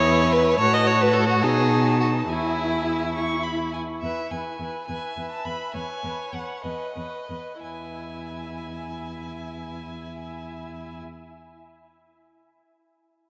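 Graceful and lively, this quick classical-period movement for string quartet moves in a rubato 6/8 in E major at 59-74 BPM in dotted quarters, easing into a slowdown from 3.2 to 7.6 seconds. A rich-toned first violin carries the melody with light vibrato, while a warm second violin shapes an expressive counterline with portamento and sits more prominently in the mix. The smooth, even viola fills the accompaniment and a close, up-front cello anchors the bass through E, F#m/A and B7 back to E, all set in a vast, echoing cathedral reverb.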